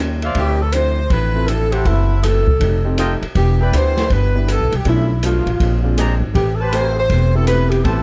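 Big band swing in A minor at 160 BPM, this brassy, swinging excerpt opens with woody, thumpy pizzicato upright bass up front and a dark, compressed archtop guitar in the background. Mellow trumpet-section stabs and a dark-cymbaled drum kit with a boomy kick join at 0.2 seconds. A clear saxophone section with vibrato carries the melody from 0.4 seconds, and a concert grand piano with deep bass and long sustain enters at 1.3 seconds. Everything is captured dry and close over chords moving from Dm9 through F9 and Bb9 to Am9.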